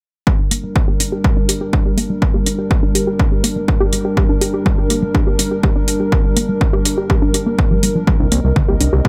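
A punchy, up-front electronic kick drives this hypnotic, melancholic melodic techno fragment in G minor at 123 BPM, alongside metallic hats, a tight, detuned sequenced synth arpeggio with chorus, sidechain pumping, tape echo and a filter sweep, a deep, wave-folded dark analog pad holding sustained chords, and a fat, saturated sawtooth bass arriving at 8.2 seconds as the harmony moves from Gm to Cm7, all within a light-reverb, echo-heavy mix.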